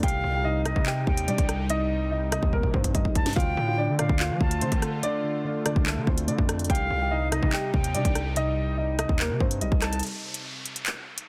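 A cold, ominous drill groove at 144 BPM in half-time opens with a dark, worn grand piano carrying the melody through a low-pass filter and delay, shadowed by a reedy, airy concert flute on a second line, muted felt-like synth keys with chorus, and a resonant, evolving sawtooth pad in the background. Underneath, a saturated, aggressive 808-style bass and an up-front electronic drum kit with a hard-clipped kick, sharp snare, crisp hats, handclaps and rim clicks drive the Cm to Dm changes, with a drum fill at 2.5 seconds. At 10.0 seconds the melodic parts stop for a break, where the drums continue under an up-front downlifter, all in a dense, heavily limited mix with little reverb, tuned to A4 = 443 Hz.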